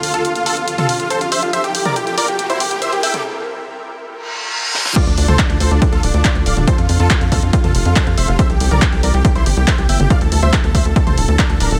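Driving and soaring, this uplifting trance excerpt moves at 140 BPM in 4/4, set in D minor and cut from a longer piece. A huge, euphoric supersaw lead carries the melody throughout, its detuned sawtooth voices bright and airy with sidechain pumping and a digital delay, while a shimmering, ethereal pad sits in the background holding sustained chords with chorus, its own reverb and an octave-up shimmer. The opening build-up runs to 5.0 seconds over Fadd9, C7 and Dm, with a filter sweep, a riser, a break from 3.2 seconds, a reverse cymbal and a drum fill from the big-room kit with its huge snare, handclaps, hi-hat, toms and crash. At the drop at 5.0 seconds, an overdriven, punchy electronic kick re-recorded in a large room arrives alongside a tight, up-front sequencer bass whose sawtooth and square-wave pluck carries sidechain pumping. The same Fadd9, C7, Dm progression returns under the drop, framed by a high-passed digital ambience.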